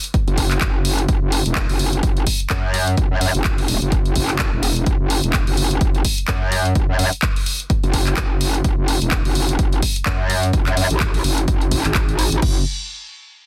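Swaggering and gritty, this bass house excerpt rides a swung groove in 4/4. An electronic kick drum, punchy and layered with a tape-warm character, drives the track from 0.1 seconds, while a house drum kit sits up front with crash cymbal, handclaps and warm hi-hats in a small room ambience. At 0.3 seconds a metallic wobble bass arrives, aggressive and saturated, with a fast attack and sustained FM and sine tones, ranging from E1 to F#2. That bass is the loudest part, treated with chorus and sidechain pumping, and sits up front beside the drums. The mix carries little reverb and a dense, heavily limited modern master, with a short new section beginning at 12.4 seconds as the clip is cut from a longer piece.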